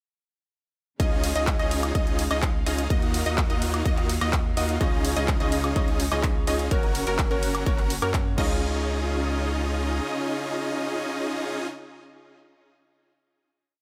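Triumphant and uplifting, this short festival progressive house piece opens straight into a drop at 1.0 seconds, where a huge, euphoric supersaw lead plays a dotted-rhythm chord riff up front over a deep, saturated sub bass and a punchy four-on-the-floor kick, with clap, hi-hats, ride, woodblock and crash from a big-room dance kit, the synths pumping with sidechain and trailing delay. A lush, detuned pluck doubles the chords in the background, a distant, very quiet string section holds a sustained pad, and from 4.8 seconds a clear grand piano adds dotted-rhythm chords of its own. The drums drop out at 8.5 seconds, and the sub bass carries on until 10.0 seconds as the lead, pluck, piano and strings ring out on a final hit over light digital ambience.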